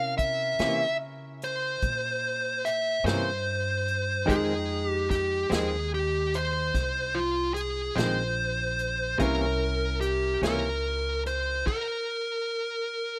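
Slow blues in 12/8 at 49 BPM, smoky and brooding, where a dark, smooth overdriven lead guitar sings the melody up front over a bright upright piano with audible action noise, a woody pizzicato upright bass, a distant, roomy soul drum kit with dark cymbals, and a clean, compressed direct-recorded electric guitar with tremolo, moving from C7b9 to Fm7 and back before the stop at 11.7 seconds, through which the lead guitar carries on to 13.2 seconds in a dry, rough home-demo mix cut from a longer piece.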